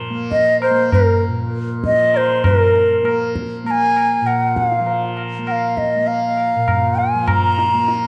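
An airy, slightly unsteady bansuri with vibrato and a soft attack sits close and up front in this devotional, radiant Hindustani classical piece at 99 BPM, entering at 0.3 seconds with high-tuned, ringing tabla over a mellow, buzzing, shimmering tanpura drone heard from the start, set in a dark mix with moderate concert hall reverb.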